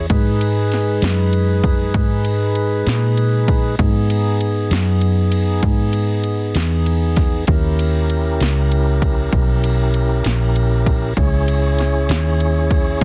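Smoky and brooding, this slow blues in 12/8 at 65 BPM sits in G# minor, with a dark, round, foam-muted vintage electric bass up front, a punchy overdriven analog drum machine driving kick, snare and ride, and a clear tonewheel organ holding sustained chords through a slow rotary speaker and plate reverb as the harmony moves from G#m to D#7b9 at 7.5 seconds and C#m at 11.2 seconds, all within a dense, heavily limited modern master cut from a longer piece.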